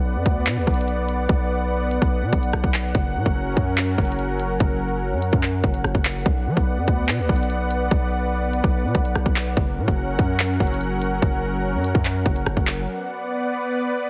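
A heavily compressed, radio-like mix with little reverb frames this ominous, cold drill cut at 145 BPM in half-time, where an electronic kit with a hard-clipped kick, crisp hats, handclaps and rim clicks enters at 0.3 seconds over a punchy, saturated 808-style sine bass and a smooth, warbling, detuned sawtooth pad with chorus sustaining Bm and F# chords in B harmonic minor, the pad holding on alone after the drums and bass stop near 12.9 seconds.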